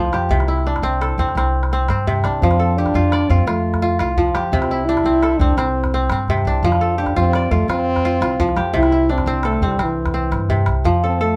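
A steady 12/8 pulse at 114 BPM in dotted quarters drives this hypnotic West African traditional piece in F major, cut from a longer work and moving between C and F chords. Up front, a crisp, ringing kora plays fingerpicked arpeggios while a mellow French horn carries the melody in a smooth, classical style with light vibrato. A woody pizzicato upright bass and a small, close calabash underpin them, with the whole band captured live in one room under a wet studio reverb.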